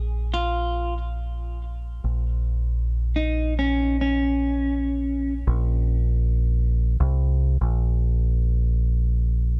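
Trip hop at a slow 70 BPM in 4/4, this hypnotic, cinematic fragment, cut from a longer piece, sits in Bb minor with a loose sixteenth-note swing. A deep dub electric bass, played with the fingers, anchors the whole clip from its first moment, its round, punchy tone kept direct and up front in a low register between Bb1 and C2. A clean, picked electric guitar carries the melody from 0.3 s to 5.3 s, staying in a narrow range from Db4 to F4 with a twangy, scooped character. The guitar alone is coloured by vintage 12-bit sampler grit and tape echo, which lend it a worn, lo-fi edge. Harmony rests on Bb minor before shifting to Bbsus2 at 5.5 s, where the bass continues on its own, and the dark production with very little reverb keeps the sound close and intimate.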